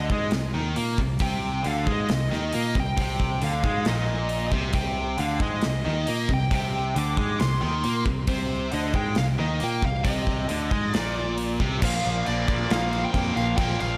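A big arena sound with lush hall reverb frames this driving, heavy hard rock excerpt in C minor at 136 BPM, where a high-gain lead guitar carries the melody over riffs from a bright, phaser-tinged cranked stack guitar and a tight distorted guitar, a growly picked electric bass and a gated 80s drum kit with a punchy kick, before a very quiet, gritty overdriven tonewheel organ with a slow rotary speaker enters on sustained chords at 11.8 s as the harmony shifts from Cm to Bb5.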